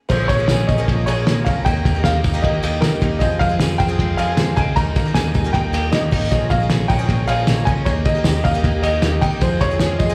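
Nostalgic and youthful, this short cut from a longer jangly indie pop piece in straight 4/4 runs from 0.1 to 10.1 seconds, cycling through Bbm7, Eb and Fm. A warm, woody upright piano carries the melody with a present sound, slightly detuned with a short sustain and a slapback echo. Behind it, a picked twelve-string acoustic guitar shimmers with boxy, octave-doubled brightness, while a clean, twangy electric guitar plays arpeggios through harmonic tremolo; both guitars also carry slapback echo. A very quiet string machine holds silky, warbling sustained chords with ensemble chorus, and a round, foam-muted vintage electric bass sits dark and amped underneath. The cloth-damped drum kit is the loudest part, muffled and gritty with a fat snare, tight kick and dark cymbals, joined by a jingly tambourine in the background. The whole recording sounds like a live gig heard through the venue's PA, with club reverb and a layer of vinyl crackle.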